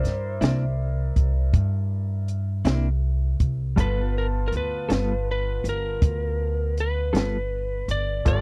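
Gritty and soulful, this slow blues excerpt in 12/8 moves at 54 BPM in G mixolydian, shifting from C9 to G9 at 3.8 seconds. A compact cocktail drum kit sits up front with a punchy kick, high-tuned snare and dark, rolled-off top, beside a woody, thumpy pizzicato upright bass on gut strings, while a slightly broken-up, picked lead guitar carries the melody. A clear, slightly detuned upright piano with long sustain and a clean, fingered electric guitar with tremolo, entering at 0.4 seconds, fill out the dry, close 1970s-style studio sound.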